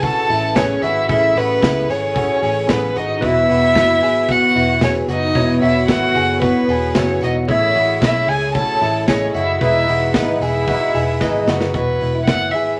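A straight 4/4 pulse at 113 BPM drives this youthful, breezy slice of jangly indie pop in E major, cut from a longer piece. A big studio-room rock kit with a punchy kick, medium-tuned snare and hi-hat anchors the groove, while a very quiet, jingly tambourine sits far beneath it and a round, foam-muted vintage electric bass holds the low end. Up front, a single dark violin carries the melody with light vibrato and a soft sul tasto touch, shadowed in the background by a lush, distant violin section playing a second line. Warbly lo-fi synth keys, detuned and nostalgic with chorus and a filter sweep, fill out the chords alongside slightly broken-up guitar arpeggios from a small old amp. A picked acoustic archtop guitar joins at 3.2 seconds with audible finger squeak, and a drum fill at 11.2 seconds leads into a brief closing section over Esus2 at 11.7 seconds. The whole mix is bathed in a wet studio reverb with a layer of vinyl crackle, passing through Amaj7, Esus2 and Emaj7 along the way.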